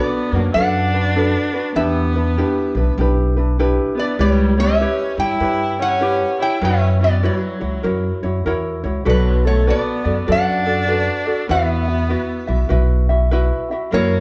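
Captured live in one room with a moderate large-studio reverb, this relaxed, languid Hawaiian excerpt swings gently at 99 BPM over a progression that runs from Bm7 through Em7, C#m7b5 and F#7 to Esus2. A metallic, nasal lap resonator guitar, played with fingerpicks and slide, carries the melody while a bright, biting bowed viola adds an intense second line with vibrato. A light, fingerpicked ukulele sits up front in the accompaniment, and a woody, growly pizzicato upright bass on steel strings joins at 0.3 s.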